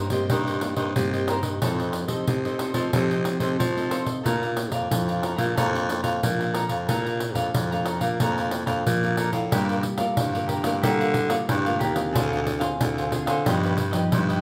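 A raspy, gritty baritone saxophone carries the bass line up front, punchy with clear vibrato, a smooth top and a pop style, anchoring this festive, playful samba and choro fragment at 91 BPM in Bb major. Beneath it, a crisp, picked cavaquinho and a full-bodied, fingerpicked nylon-string guitar with a deep classical tone fill out the harmony, while a jingly pandeiro played with soft hands sits close, dry and up front. The band plays live in one room with a wet, large studio reverb, and the music turns to G minor at 9.5 s.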